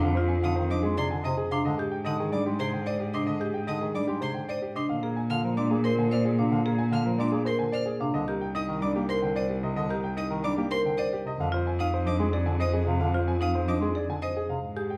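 Minimalist classical pattern music at 111 BPM in 3/4, hypnotic and urgent, this fragment from a longer piece sets a baby grand piano's clear, long-sustaining melody over bowed cello bass with vibrato sitting up front, bass clarinet accompaniment, woody hard-mallet marimba arpeggios and a faint, smooth violin from a single player arpeggiating high from 0.4 seconds, all heard from further back in a wet large studio as the chords move through Fm7, Abmaj7, Bb7 and Cm7 before returning to Fm7.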